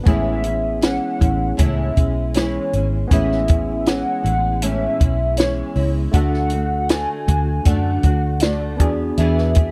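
A compact cocktail drum kit sets a straight, unhurried pulse in 4/4, sitting up front with a punchy kick, a high-tuned snare and hi-hat, all dry and natural. Beneath it, a vintage muted fingered electric bass plays dark, round and foam-muted, also close in the mix. This hazy, laid-back slice of indie and bedroom pop, cut from a longer piece, moves from Amaj7 to D at 6.1 seconds and touches E7 at 8.8 seconds. A small, fingerpicked nylon-string guitar, treated with ensemble chorus and a warbly pitch drift, shares the accompaniment with a bright, barky tine electric piano heard through a combo amp and colored by cassette tape. Over them floats a nostalgic synth lead, detuned and wave-folded, blending triangle and sawtooth into a mellow, sustained tone with vibrato, analog chorus and tape echo. The whole has the dry, close feel of a 1970s-style studio recording, touched with studio reverb.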